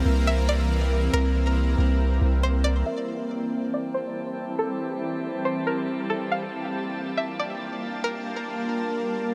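Hip hop with a half-time feel and a hazy, spacious mood, this fragment of a longer piece opens on an ethereal, granular pad with an octave-up layer and a deep, mellow sine 808-style bass that sits up front until 2.8 seconds. A bright, twangy string-like resonator pluck carries the melody from 0.3 seconds through chorus and digital delay, with a filter sweep from 2.9 seconds, while a calm, glassy texture of drifting overtones hovers across the changes from C7 to Am7 to Gm9. The parts sit in a huge ambient reverb with a long, lingering tail.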